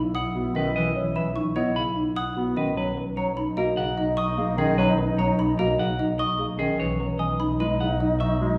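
A straight 5/4 pulse at 149 BPM drives this meditative yet urgent slice of minimalist classical pattern music in B major, moving through F#7sus4/B, Bmaj9 and Emaj9/B. Woody, rustic folk marimba and airy, dry xylophone spin soft-mallet arpeggios, while a clean, picked electric guitar carries the melody and a pure alto flute with vibrato sits in the background as a second line. Beneath them, a roomy bass clarinet supplies accompaniment and a bowed double bass, up front and expressive with portamento, holds a low B, all set back in a wet recital hall.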